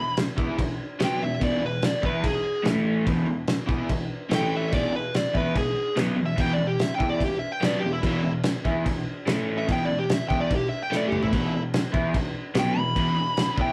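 Swaggering and rowdy, this garage rock excerpt at 145 BPM in straight 4/4 features a dark, compressed fuzz lead guitar soloing from the start over a double-tracked, overdriven rhythm guitar riff with phaser, a cloth-damped, thuddy drum kit with a fat snare and dark cymbals entering at 0.2 seconds and adding a fill at 10.9 seconds, all caught in a rough rehearsal-room recording with wet studio reverb.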